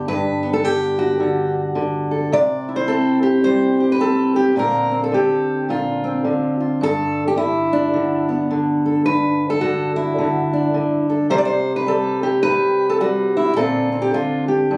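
Nostalgic and peaceful, this brief folk excerpt is cut from a longer piece and features a solo fingerpicked steel-string acoustic guitar, up front with an auditorium-like warmth, swinging gently at 107 BPM in G major through chords such as Gadd9, C and Bbadd9, captured on a phone in a room with a light club reverb.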